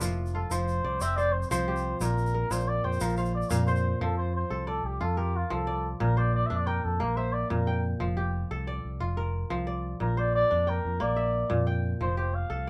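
West African traditional music, this short excerpt from a longer piece moves at 120 BPM in a flowing 12/8 in F major, with a hypnotic mood. A kora plays ringing, crisp fingerpicked arpeggios throughout, sitting up front beside a growly, amped fingered electric bass that holds the low end. A grainy tube shaker adds texture only through the first 3.8 seconds. From 0.3 seconds a cup-muted trumpet carries the melody in a veiled, jazz-style voice with vibrato, taking a solo over the opening four seconds before the music moves into a second section. The harmony alternates between F and Bb every two seconds, and a small room's moderate ambience surrounds the whole.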